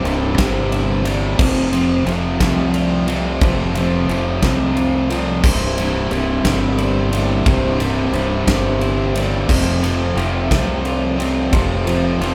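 Cinematic and soaring, this post-rock passage in 6/8, cut from a longer piece, is built on an up-front, bright, double-tracked distorted guitar riff and a growling, overdriven fingered bass, driven by a huge arena drum kit with a fat snare, boomy kick and crash and ride cymbals in a pumping hall. Beneath them, a very quiet, clean, compressed twelve-string electric guitar and a ringing, metallic vibraphone with slow motor vibrato play arpeggios over chords moving between C and F. At 5.4 seconds a reedy, breathing pedal harmonium joins with mellow sustained chords, all under a light reverb.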